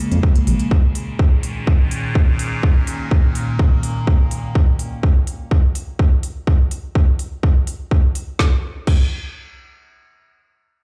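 Dark and dramatic, this melodic techno excerpt at 125 BPM opens on a bright, morphing wavetable pad holding Bbm7 and Absus4/Bb chords through a phaser and its own reverb while a deep, rumbling detuned saw bass pumps briefly beneath it. Almost at once a deep house kit of woody snare, smooth hi-hats and crash cymbal comes in, and an overdriven, punchy electronic kick joins it up front, all inside a large studio reverb as if played on a big sound system in a bare room, before the drums stop at 9.0 seconds.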